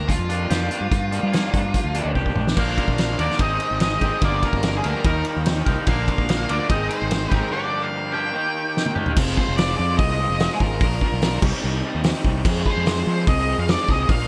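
A dark, fuzzed-out octave lead guitar carries the melody through this cool, moody indie rock excerpt at 146 BPM in 4/4 and F dorian, over a growly, overdriven fingered bass and a loose, up-front drum kit with a fat snare, punchy kick and gated reverb. A bright, twangy clean guitar with analog chorus plays a riff until 9.2 s, while a raw, lo-fi garage guitar with overdrive and harmonic tremolo picks its own riff from 0.3 s onward. Drum fills at 2.2 s and 8.8 s lead into new sections, and the light reverb and bright 1980s-style digital production frame the natural, small-room kit.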